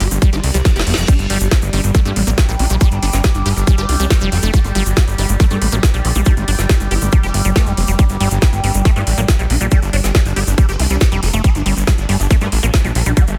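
An alien-sounding slice of psychedelic trance opens with a fat, detuned analog bass up front, a squelchy liquid acid bass with phaser and dub echo, a swarming, bright rave lead with chorus and portamento, an overtone-sweeping drone with ring modulation and its own reverb, and a garage drum kit of woody snare and metallic hats, all five joined by a tight, up-front electronic kick that arrives at 0.2 seconds, while a grainy, close tube shaker and a brief reverse cymbal at 0.4 seconds sit in the background, and the lead, drone and acid bass pump under sidechain in a dense, heavily limited mix with little room sound.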